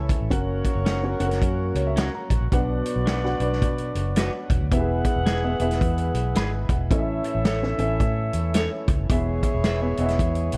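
Uplifting and danceable, this excerpt of uptempo 1960s-style soul moves at 109 BPM in 4/4 with a swung eighth-note feel, set over a chord movement from F# through Bm, E and A. A punchy, up-front vintage drum kit and a round, foam-muted fingered bass drive the groove, while a dark, woody upright piano with audible action noise accompanies and adds fills at 1.4, 6.1 and 9.7 seconds. A distant, roomy horn section carries a second line, a clean semi-hollow electric guitar adds picked stabs from 0.9 seconds, and a gritty overdriven tonewheel organ with key click and a slow rotary speaker holds sustained chords in the background, all in a dry, dark production.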